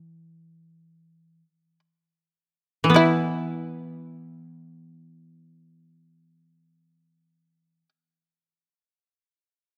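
Moving in free time with an unmeasured pulse, this brief fragment of Japanese traditional chamber music slows over its opening 3.0 seconds before settling into a second passage that runs to its close. The mood is austere and calm. Both instruments sound together from the start until 7.9 seconds. The shamisen carries the melody around E4 with a bright, buzzing, percussive tone, plucked with a plectrum on its fretless neck and projecting real power. Beneath it, the koto accompanies between E3 and E4, played with fingerpicks, its dry, woody voice sitting up front. Close, detailed microphones and a light reverb give the sound an intimate, precise character.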